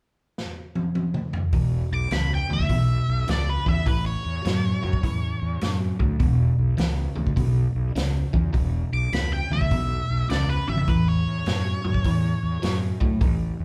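A swung 4/4 groove at 103 BPM drives this swaggering blues rock and southern rock power trio excerpt, opening with a drum fill from a punchy, up-front vintage kit before a bright, double-tracked crunchy guitar riff with phaser and a growly fuzz bass enter at 1.5 seconds over E5 and A chords, while a dark octave-fuzz lead guitar with wah sings high above, all captured live in one large studio room with moderate reverb.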